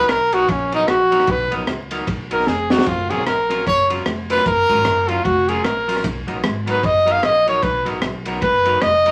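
Upbeat and joyful, this short ska cut from a longer piece swings along at 151 BPM, with a clear, punchy trumpet soloing up front with light vibrato over Bmaj7 and F#maj7 chords. A bright, clean semi-hollow electric guitar with analog delay and a woody, thumpy pizzicato upright bass sit low beneath it, while a crunchy, saturated breakbeat kit with a high-tuned snare and punchy kick, also touched by analog delay, enters at 0.1 s and drops a fill at 2.5 s. Wet studio reverb and vinyl crackle give the whole recording a record-like glow.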